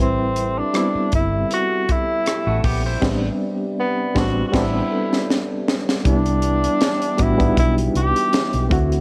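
A breathy, intimate tenor saxophone with vibrato and scooped notes carries the melody of this smooth, bittersweet 1970s-style soul excerpt. Beneath it play a barky, lightly overdriven electric piano with fast tremolo, a dark, distant French horn section holding chords in the background, and a round, punchy hollow-body bass with tube saturation. A tight funk drum kit with a high-tuned snare sits up front from 0.4 seconds, and a twangy, slightly broken-up electric guitar adds a brief riff with spring reverb at 2.5 seconds. A delicate, bell-like celesta enters very softly at 4.9 seconds, while band accents and a drum fill lead into a new section, all in light small-room reverb.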